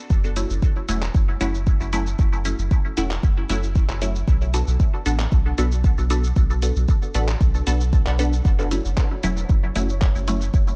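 A dark, warm digital ambience frames this meditative, hazy dub techno excerpt at 115 BPM in F# minor, where an up-front deep kick lands as a round sub bass pumps beneath muffled, tape-toned claps, hi-hat and shaker, while filtered chord stabs with phaser and dub echo move from F#m7 to Bm7, a quieter chorused stab riff sits behind them, and a bubbling resonant texture arrives at 8.8 seconds as a filter sweeps the stabs.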